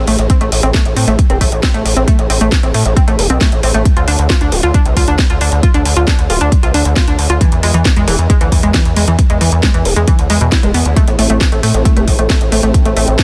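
An analog pluck and a gritty, driven synth bass open this excerpt of uplifting trance at 135 BPM in A harmonic minor. The pluck plays arpeggios with a round, detuned sawtooth-and-square character, a touch of ring modulation and a filter sweep, treated with chorus and tape echo and pumped by sidechain. Beneath it, the bass sits up front with a nasal, saturated, oscillator-sync edge and its own sidechain pumping. A house kit with a cracking snare and metallic hats arrives almost at once, and a punchy, layered electronic kick lands at 0.3 seconds. The chords move from A minor through D minor and E7 and back to A minor. At 11.0 seconds, a lush, airy unison pad with phaser and chorus enters in the background, lending an emotional, soaring lift to a dense, heavily limited modern master set in digital ambience.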